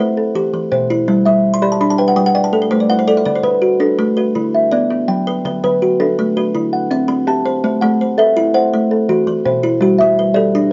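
Trance-like and hypnotic, this short excerpt cut from a longer piece is southern African traditional music built on an mbira-style interlocking cycle in 12/8, moving at 110 BPM in dotted quarters with a straight feel in A dorian. Two kalimbas carry the whole thing in arpeggios, both up front with woody, hollow-box plucks; the first opens at 0.0 s with a dark, ringing tone and a smooth, warm body, while the second joins at 0.2 s sounding bright and short. A kalimba fill arrives between 1.4 and 3.3 seconds, and the harmony cycles through Em, G, D, Bm and C before a later passage from 7.6 s turns to Am, E5 and G. The pair sit in a moderate small room, and the sound carries the worn character of old cassette tape, with warbly pitch drift and a muffled top end that rolls off everything above 7.5 kHz.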